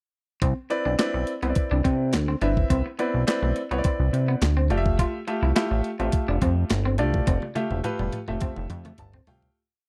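A dry, close studio sound with digital ambience frames this smooth, feel-good early-eighties boogie funk piece, where a glossy, nasal chorused synth bass plays a fat syncopated line with slides under a crisp, thumpy 8-bit drum machine beat with clap-layered snare, a clear concert grand piano adds syncopated chord stabs with grace notes, and a twangy, slightly broken-up electric guitar with lush chorus plays a fingered, muted single-note riff, until a drum fill and fade-out begin at 7.3 seconds and a short piano fill arrives at 8.7 seconds.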